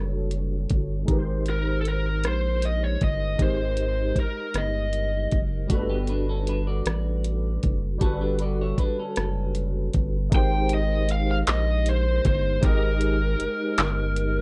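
A lo-fi, overdriven lead guitar through a small cranked amp carries the melody from 1.5 s, drops out while a chorused, slightly broken-up second guitar plays from 5.7 s, and returns at 10.4 s, over a barky tine electric piano with ensemble chorus, a rubbery, hollow square bass and an up-front electronic kit of knocking kick, metallic hats, handclaps and rim clicks in this tender, dry, slow six-eight R&B excerpt at 52 BPM that moves between Gmaj9 and Abmaj9.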